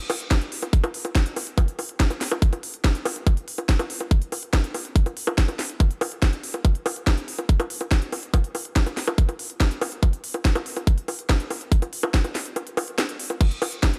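Alien and psychedelic, this short excerpt from a longer trance piece runs at 142 BPM in a straight 4/4. A tight electronic kick drum, layered and up front, carries the pulse from 0.3 seconds, re-recorded in a small room. Around it, a drum and bass style kit adds bongos, crash cymbal, crisp hats and a cracking snare, its layered, produced sound given a tape-warm sheen. Both drum parts sit forward in the mix over a digital ambience. A brief break between 12.6 and 13.4 seconds interrupts the steady groove before the excerpt ends at 14.0 seconds.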